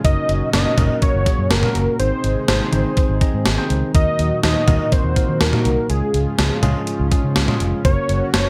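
A thick, bold unison lead built from detuned sawtooth and triangle tones with a sub octave leads this bright, wistful synth-pop piece in Db major at 123 BPM, carrying the melody between Ab4 and Eb5 through delay and plate reverb. Beneath it, a gated 80s digital drum machine sits up front with a thumpy kick, a gated reverb snare, hi-hat and toms, its sampler-style sound re-recorded in a large room. A vintage muted fingered electric bass gives a dark, round, foam-muted foundation from F1 to Eb3, and it stops at 8.4 seconds while the other parts run to 8.5. A clean tine electric piano, heard through built-in speakers, fills out the accompaniment, and a shimmering, retro pulse-width pad with chorus and a slow attack holds sustained chords in the background. The harmony moves through Gb, Ab, Ebm and Db before returning to Gb at 7.8 seconds, in this short cut from a longer piece with light reverb over the whole mix.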